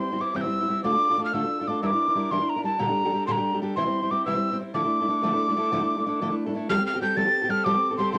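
Celtic folk slide in a wild, driving 12/8, cut from a longer piece, where a breathy, mellow metal whistle with vibrato, tongued chiff and rolled-off highs carries an unsteady, up-front melody over a dark, fingerpicked steel-string acoustic guitar, both with cassette tape colouring, in a home recording on cassette with wet studio reverb, as chords move from C through Dm, Em7b5 and Gmadd9/Bb before settling on Fadd9 at 6.7 seconds.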